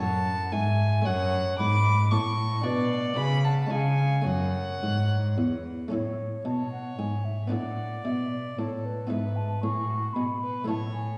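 Serene and dance-like, this excerpt from a baroque-style sonata movement moves in a straight 3/4 at 114 BPM, beginning in F# minor and turning to A major at 5.9 s. A wooden, pure-toned baroque flute carries the melody with vibrato and tongued notes. A single bowed violin with gut strings plays a second line in period style, its sound reedy with light vibrato. Underneath, a buff-stop harpsichord gives muted, lute-like plucked accompaniment in the Italian manner, and a rich bowed cello holds the bass, sitting up front in the balance. All four parts play throughout, moving from F#m through Bm and C# before the shift to A, Bm7/A and E/G#. The scoring-stage reverb is wet, the listener seems placed further back in the room, and the top end is soft and rolled off.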